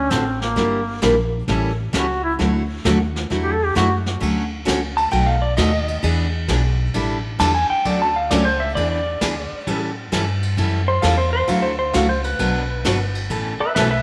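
A moderate plate reverb gives this swinging, cheerful western swing excerpt in D major a soft, roomy glow at 132 BPM, with a relaxed swing on the eighth notes. A vintage brush drum kit sits in a small room with dark cymbals, a tight kick and a rolled-off top, while a woody, thumpy upright bass plays pizzicato up front. A bright, full-bodied steel-string acoustic guitar carries the picked accompaniment, its fresh strings catching an occasional finger squeak. From the start a warm duduk takes a folk-style solo, scooping into notes with vintage vibrato until about 3.9 seconds. Then at 5.0 seconds a clean, dark lap steel guitar enters, compressed and fingered with slide and volume swells, and leads the rest of the passage over chords that move through dominant sevenths and added-ninth colors.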